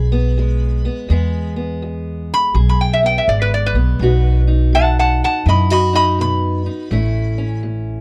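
A metal-body resonator guitar, played up front with a steel bar and fingerpicks, carries the melody with a bright, nasal, metallic slide tone before dropping out at 7.6 seconds in this swaggering, soulful excerpt of acoustic country blues in E major. Beneath it, a fingerpicked parlour-style steel-string acoustic guitar with old strings adds a dark, boxy accompaniment, while a pizzicato upright bass on steel strings sits forward with a woody pulse. The 83 BPM groove swings in 4/4 over a move from E to B at 4.0 seconds and on to A, all captured with close, detailed microphones and little reverb.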